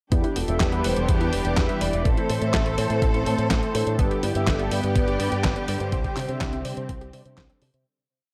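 A straight four-on-the-floor electronic kick and a detuned, tape-warm 8-bit drum machine of handclaps, hi-hat and snare drive this playful, romantic italo disco piece, where a fingered electric bass with an envelope filter and tube saturation jumps octaves beneath sustained, vibrato-rich studio strings, a very quiet, bright unison pluck runs a 16-step arpeggiated sequence, a dark synth brass with chorus and cassette tape colour plays dotted-rhythm background chords, and a round, chorused synth brass carries a motif-based melody partly doubled in thirds, all in a dry, gritty hardware sound with light digital ambience that fades out from 5.3 seconds.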